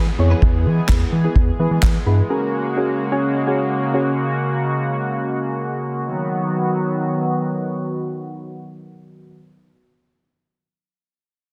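A straight 4/4 dance-pop pulse at 128 BPM in B major drives this upbeat, carefree fragment, where a punchy, airy acoustic drum kit with handclaps and a soft-clipped snare sits up front from 0.4 to 1.9 s over a round, dark analog bass and warbling vintage chord stabs, all pumping against the kick, while a very quiet electronic downlifter passes by and a shimmering, retro chorused pulse-width pad sustains through the E to F#add9 changes until it resolves on B at 6.0 s, bathed in moderate studio room reverb and a dense, heavily limited master.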